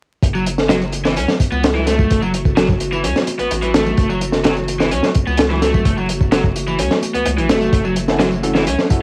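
A crunchy breakbeat kit opens at 0.2 seconds with a punchy kick, a high-tuned snare and hi-hat, sounding saturated and gritty with a rolled-off top and placed up front. A deep, thick saturated sub bass and a tambourine tucked into the background enter with it. This raw, energetic breakbeat passage runs at 128 BPM in a straight 4/4, cut from a longer piece and resting on F#m7 in F# minor pentatonic. A raw garage guitar plays an overdriven, picked, double-tracked riff up front, roughened with tube saturation, vintage 12-bit sampler grit, cassette tape and tape echo. At 1.0 seconds a warbly, nostalgic pad of detuned square and triangle tones with a sub octave begins holding mellow sustained chords in the background, carrying chorus, built-in reverb, sidechain pumping and cassette wobble. Very quiet soft-handed congas join at 1.3 seconds. At 8.1 seconds a bright, overdriven tine electric piano adds stabs through a combo amp, colored by phaser and tape echo. 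The whole piece has the lo-fi feel of a home cassette recording in light reverb, with vinyl crackle on top.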